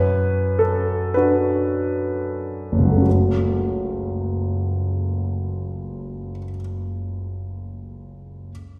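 In a slow, rubato 6/8 at roughly 28-39 BPM in dotted quarters, this fragment of a romantic classical nocturne in F# minor holds back further over its opening 3.1 seconds, moving from a B minor chord over an F# bass to F# minor as a second section begins. A solo concert grand carries the whole piece, ranging from a deep low F# up to B4 with a warm, natural, intimate tone, its action noise audible and its sound placed up front. A wet reverb suggesting a church or concert hall surrounds the instrument, deepening the melancholic, yearning mood.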